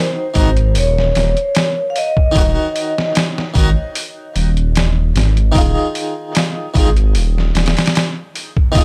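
Trip hop at 75 BPM in Eb dorian, cinematic and melancholic, moving from Ebm to Fm/Eb in this short cut from a longer piece. A metallic, ringing vibraphone with fast motor vibrato carries the melody with tape echo until 3.1 s, over a brilliant, close-miked Italian-style harpsichord with tremolo and tape echo, while from 0.4 s a deep, rumbling detuned saw bass and an up-front, pitched-down sampler-style kit with a thumpy kick and overdrive take hold. The mix is dry and gritty, colored by hardware transformer saturation and little reverb.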